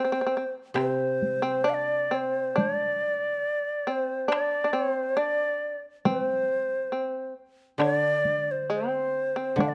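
Japanese traditional chamber music, austere and calm, unfolds in a free, rubato 4/4 across a brief passage cut from a longer piece. A bright, airy bamboo shakuhachi carries the melody up front from the opening, its end-blown tone gentle in attack and touched with vibrato. Beside it from the start, a plectrum-plucked shamisen plays a lower second line, its fretless, buzzing sound percussive and powerful. The koto joins at 0.7 seconds with a dry, woody accompaniment picked low, and a taiko ensemble struck with hard sticks enters at 0.8 seconds, sounding close and dry. Light reverb and close, detailed microphones keep the small group intimate and clear.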